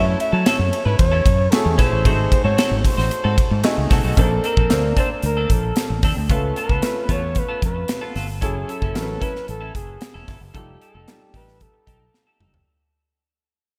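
A straight 4/4 groove at 113 BPM drives this bittersweet, urban slice of polished 1980s jazz-funk pop, built on a punchy, up-front fingered electric bass and a bright, airy studio drum kit with gated reverb on its kick, snare, hi-hat, ride and toms. A mellow flugelhorn sings the solo melody with vibrato and a soft attack over a present grand piano touched with subtle chorus, while a clean, compressed electric guitar picks a riff bathed in lush chorus, all under light small-room reverb and glossy digital production. The piano adds a fill at 3.4 seconds, the excerpt begins fading out at 4.2 seconds as the chords move through F#m7, G#7b9, A#maj9, C#7alt, back to F#m7 and on to F9, and a drum fill arrives at 12.1 seconds.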